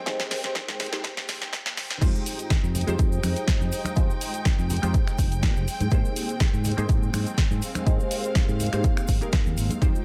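Funky and groovy, this filtered disco house excerpt opens with a two-second build-up, where a drum fill and a filter sweep lead into the drop at 2.0 seconds. An up-front, punchy electronic kick with a tape-warm analog edge anchors the groove, while a layered house kit adds a punchy snare, hi-hat, shaker, finger snaps and crash cymbal, its hats, cymbals and percussion pumping with the sidechain. Quiet maracas and congas played with soft hands add a bright acoustic touch. A growly fingered electric bass and a nasal, detuned polysynth comp with a filter pluck, chorus and phaser both pump and sit under a low-pass filter. Distant, lush bowed strings with vibrato hold sustained chords, roughened by vintage 12-bit sampler grit, as the harmony moves from Abmaj7 to Fm9 and back to Abmaj7 at 5.7 seconds. The mix is dry, with only small room ambience on the drums.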